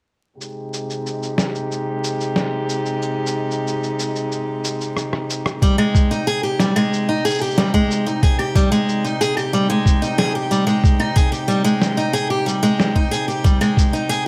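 A vinyl crackle and light small-room reverb frame this pastoral, playful folktronica excerpt in Ab major at 92 BPM, opening on an Abmaj7 as an intimate, airy-bowed string quartet holds soft sustained chords under a filter sweep, alongside muffled, pitched-down, tape-warm cabasa, snare, rim click and claves. A drum fill at 5.0 seconds leads into the second section at 5.6 seconds, where a thumpy, compressed electronic kick and a bright, up-front picked steel-string acoustic guitar enter, the guitar spinning delayed arpeggios over the quartet's chamber hush.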